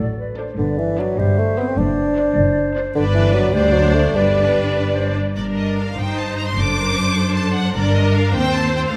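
Graceful and lively, this brief cut from a quick classical-period movement for symphony orchestra moves in a lilting 6/8 with a straight feel. A rich violin section carries the melody high and expressive with vibrato, while a second, softer violin line sits in the background and a distant viola section fills in the accompaniment with portamento. Underneath, a focused, close cello section and a distant double bass section bow the bass line. A hollow, very quiet silver flute and a smooth-topped clarinet add a second line. An up-front, close-miked bassoon with light vibrato supplies accompaniment until the woodwinds fall away at about 5.2 seconds. At 5.4 seconds the second section takes a darker turn for strings alone, all set in a wet scoring-stage reverb.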